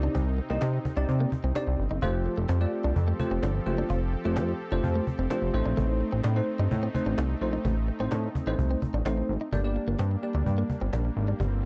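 Dance-pop in G minor at 128 BPM, this short cut from a longer piece feels bittersweet yet energetic, moving straight in 4/4 over chords that shift from Cmadd9 to Fadd9 and Adim before landing on Gm at 9.5 seconds. Up front, a retro, glossy synth bass built from pulse and sawtooth waves carries the low end with a plucky filter, fast attack and its own chorus. A bell-like tine electric piano supplies brilliant, clean accompaniment through an ensemble chorus and drops out at 10.7 seconds, while a clean electric guitar, recorded direct and compressed, picks a riff in the background with a subtle chorus. Beneath them, a soft supersaw holds airy, full-bodied chords with a mellow, detuned unison character. A snappy acoustic cajon, close-miked and played with soft hands, drives the rhythm, and the whole mix sits in a digital ambience with a dry, gritty hardware and cassette-tape flavour.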